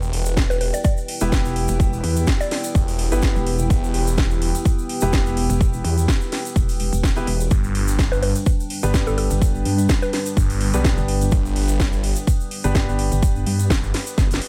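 A swung 126 BPM groove in 4/4 drives this aggressive, swaggering bass house excerpt in E minor, where a punchy, up-front electronic kick and a house kit with cracking snare and metallic hi-hats anchor a heavy, saturated pulsing wobble bass, joined by a swirling phased detuned saw bass that drops out briefly before returning at 7.5 s as the harmony moves from Em to G, while a grainy distant egg shaker, a woody mallet-like synth pluck melody with phaser and delay, boxy intimate concert grand piano stabs, a deep, moody analog pad and a warbling, nostalgic tape-like pad sit in a dry mix that closes with a drum fill at 14.2 s.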